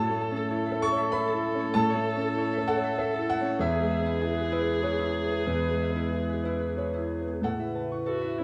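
Loose, rubato waltz time at 95 BPM carries this hopeful, intimate neoclassical excerpt in A major, where an up-front, boxy concert grand piano with deep bass and long sustain plays the accompaniment, joined by a single distant, woody viola bowed sul tasto with vibrato, a very quiet, hollow, flute-like pad of detuned, chorused sustained chords, and ringing fingerpicked harp arpeggios in the background, all in light reverb as the harmony moves from A to E and settles on Aadd9 at 7.4 seconds.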